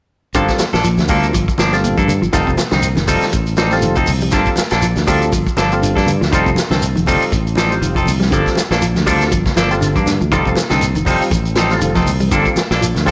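Afrobeat groove in G minor at 120 BPM, funky and defiant, with a 16th-note swing feel, cut from a longer piece and moving between Gm9 and F9 every two seconds. A vintage acoustic drum kit with a tight kick, medium-tuned snare and hi-hat sits mid-forward with a rolled-off top, while a punchy fingered electric bass, direct and amped, anchors the low end from the first moments at 0.3 seconds. An up-front, scooped clean electric guitar plays picked stabs, and a second, darker clean guitar, fingered and set in the background with a vibrato effect, spins low arpeggios beneath it. A mellow, round tonewheel organ with percussive second-harmonic attack and key click fills in the accompaniment through a slow rotary speaker. A grainy shekere sits close and dry, and low-tuned congas with a thick skin and soft hands join at 0.6 seconds further back, all wrapped in a moderate echo-chamber reverb and small-room ambience with a softened, dusky high end.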